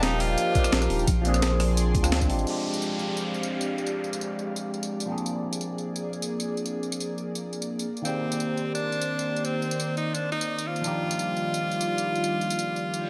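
Soulful and dreamy, this excerpt of liquid drum and bass runs at 172 BPM in a straight 4/4, set in F dorian with a light reverb over the mix. It opens on a drop, where an up-front, round sine sub bass, joined at 0.6 seconds by a knocking, overdriven electronic kick, drives the first bars until a band accent at 2.1 seconds, after which both fall away. An edgy tenor saxophone takes the lead with forceful, jazz-style scooped notes, playing a brief phrase at the start before returning as an up-front solo from 8.0 seconds, treated with digital delay. Underneath, a barky, gritty tine electric piano heard through a combo amp carries the accompaniment with phaser and tape echo, while an airy, breathy pad with chorus and sidechain pumping sustains full-bodied chords moving from Ebmaj9 and Bb9 through Fm69, Bb7 and Cm9. A compressed, sampler-style breakbeat kit with a high-tuned snare, hi-hat, rim click and tambourine runs throughout in studio reverb, and an electronic downlifter and reverse cymbal sweep through the middle before a final reverse cymbal at 13.0 seconds.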